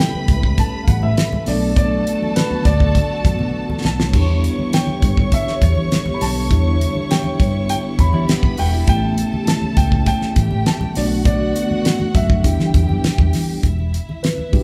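Silky and smooth, this lush 1970s-style soul passage moves at 101 BPM in a straight 4/4, set in E dorian and cut from a longer piece. A grand piano carries the melody with an intimate, naturally sustained tone, its action noise audible. Two bowed string sections add vibrato: one voices a higher second line with an even, smooth top, while the other holds sustained chords in the background with a woody, close sound. A mellow tine electric piano, heard through its built-in speakers, fills out the accompaniment over a dry, up-front 70s drum kit with a fat snare and tight kick. A dark, round, foam-muted fingered bass and very quiet, low-tuned congas played with hard hands join at 0.1 seconds, and the drums play a fill at 3.5 seconds. A clean, compressed, direct-recorded electric guitar slips in a brief picked riff in the background at 8.1 seconds, as the harmony cycles through A7, Bm7 and Em7 in a live-room sound with a moderate large-studio reverb.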